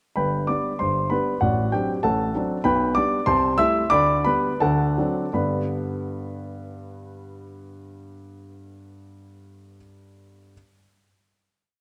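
A polished, present grand piano rings in a moderate recital-hall reverb as it plays a graceful, elegant classical-period sonatina variation in G major and 2/4, its tune voiced in filled octaves over octave bass with chords, moving with rubato at 80-100 BPM, slowing from 2.0 to 5.3 seconds and settling on a final G chord held to 8.3 seconds.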